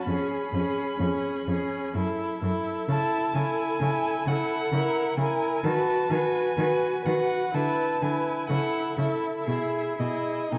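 Heard through warbling, worn cassette tape and a wet stage reverb, this melancholic, yearning fragment of a slow romantic string quartet movement sways in a rubato triple metre, with a clear, close first violin singing a smooth melody over a distant second violin's expressive portamento line and a rich, focused viola and cello placed up front.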